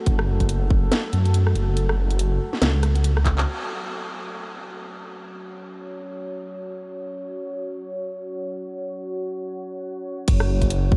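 A dreamy, reverb-soaked mix with a huge ambient tail gives this slice of a longer deep dubstep piece a meditative yet heavy mood, moving with a swung, half-time feel. A moody, detuned sawtooth pad with a sub octave and a slowly moving notch holds sustained chords throughout, its slow attack, long release, chorus and built-in reverb keeping it soft and distant beneath the other parts. Up front, a rumbling, beating bass of detuned sawtooth unison with a fast attack sits alongside a tight, layered electronic kick with a tape-warm character and studio reverb. A garage kit adds a cracking snare, handclaps, rim clicks, hi-hats and crash cymbals, with its snare, hats and cymbals low-pass filtered, and a drum fill at 3.3 seconds leads into a band accent. By 3.5 seconds the bass and drums drop away, leaving the pad alone under a filter sweep on a bare fifth, until they return at 10.3 seconds.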